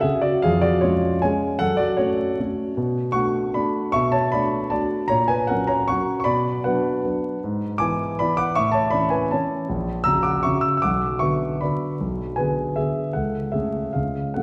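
A rubato waltz in 3/4 carries this bittersweet, nostalgic classical piece, played by a solo concert grand piano that sits up front with a warm tone, deep bass and short sustain. The harmony winds through minor chords, a dominant seventh and a diminished chord before pausing on an unresolved C# major chord. A wet concert-hall reverb places the listener further back in the room, and a vinyl crackle adds to the sense of an old recording cut from a longer work.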